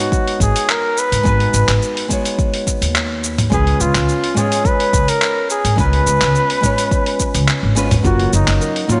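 A big, arena-sized sound with moderate stage reverb and a softened top end frames this relaxed, warm sunset chillout excerpt, where an up-front, breathy flugelhorn carries a jazzy melody with light vibrato and scooped notes through tape echo over fingerpicked nylon-string guitar with delay, a gritty, overdriven sampler-style kit of cabasa, handclaps, hi-hat and toms layered with a deep electronic kick, and a woody, growly pizzicato upright bass, while very quiet congas and a dark, round pluck with chorus join at 8.0 s.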